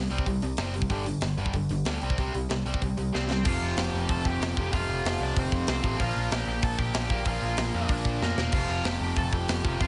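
Punk rock at 189 BPM with an upbeat, energetic drive, cut from a longer piece, where a bright, double-tracked distorted guitar riff sits up front with a growly, punchy overdriven bass and a tight metal drum kit, itself up front with a warm, rolled-off top, whose fills at 3.1 s and 8.2 s mark the move from C5 and G5 power chords to F5, Bb and F, while a cranked stack guitar carries an overdriven picked melody from 3.2 s, all in a light reverb.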